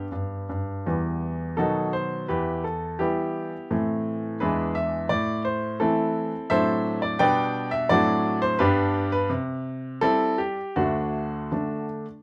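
This classical-period piano sonatina in E minor unfolds at 85 BPM in 2/4, played with a rubato feel that keeps the mood graceful and cheerful despite the minor key. A single baby grand piano carries the whole piece from 0.0 to 12.1 seconds, ranging from D2 up to G5. Its tone is clear, intimate and natural, sitting up front with audible action noise that brings the listener close to the instrument. The harmony moves from E minor through B7 and A minor, then shifts toward G major by way of D7/A and G/B before settling on C and finally D near 10.8 seconds. Light reverb and a dark, warm production round out the sound of this brief extract from a longer work.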